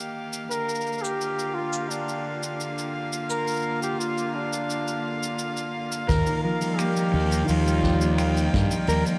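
Folktronica at 86 BPM in Eb major, hopeful and warm, with a close, gut-string quartet holding sustained chords under a punchy flugelhorn melody that scoops into its notes through analog delay, while a dark brush kit with cabasa, finger snaps and hi-hat sits low in the mix. At 6.1 seconds a ringing fingerpicked harp, a growly overdriven fuzz bass up front and a distant, roomy kick played with bundle sticks join in. The whole excerpt is soaked in a huge, dreamy reverb.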